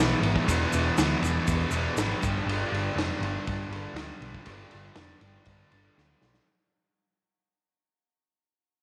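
This swaggering, gritty garage rock fragment, cut from a longer piece, moves at 120 BPM in a straight 4/4 and fades out across its entire length. An up-front, double-tracked fuzz guitar drives the riff with a compressed, distorted bite, shifting from an E chord to G5. Beneath it, a hollow-body short-scale electric bass is picked with a dark, round tone thickened by tube saturation. The raw acoustic drum kit sits forward with a punchy kick, a medium-tuned snare and shadowy ride cymbals in a stone-room sound with a rolled-off top, ending on a drum fill from 6.0 seconds. A grainy, vintage egg shaker rattles in the background between 0.5 and 2.3 seconds, and light reverb lends the whole a small-room ambience.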